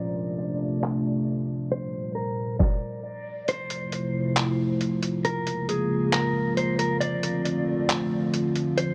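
Atmospheric cloud-rap hip hop with a dreamy, blissful half-time feel opens at 0.0 s with a deep, detuned analog pad holding chorused chords beneath a clean, fingered electric guitar melody trailed by digital delay, joined at 0.8 s by a lo-fi sampler-style drum kit of muffled, pitched-down handclaps, hi-hat, kick and snare, while a filter sweep shapes the opening until 3.5 s, when the kick falls silent and the track drifts on in light reverb and digital ambience.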